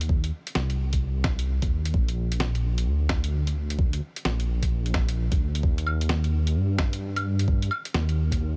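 Rainy and ghostly, this short future garage fragment, cut from a longer piece, moves in 4/4 with a loose, swung sixteenth-note feel. A dark detuned saw bass sits up front, its deep, rumbling sawtooth unison beating and blended with a sine layer, with tube saturation and sidechain pumping giving it a heavy, breathing presence through to 8.6 seconds. Beneath it, a lo-fi sampler-style drum kit of claves, hi-hat and a medium-tuned snare sounds compressed, pitched down and muffled, as if heard through an old tape. An electronic kick drum enters at 0.1 seconds with a layered, knocking punch that carries a tape-warm colour. The mix is dry, with little reverb, so the bass and kick feel close and the sampled kit stays hazy in the background.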